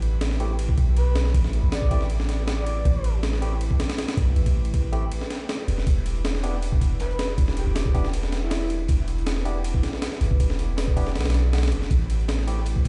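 Drum and bass with a jungle edge, this atmospheric, raw excerpt runs at 159 BPM in E minor, moving from Am7 to Em7 over a deep, sine-toned 808-style bass with tube saturation and a compressed, pitched-up sampler breakbeat kit with a thumpy kick and high-tuned snare sitting up front. A barky tine electric piano plays dub-echoed stabs in the background, while a breathy, flute-like synth lead with chorus and vibrato drifts in for short melodic phrases at 1.0 and 7.0 seconds. From 5.9 seconds a second, very quiet breakbeat kit adds dark, saturated hi-hat and snare, and the whole piece sounds as if played on a big sound system in a bare stone room, its top end dulled.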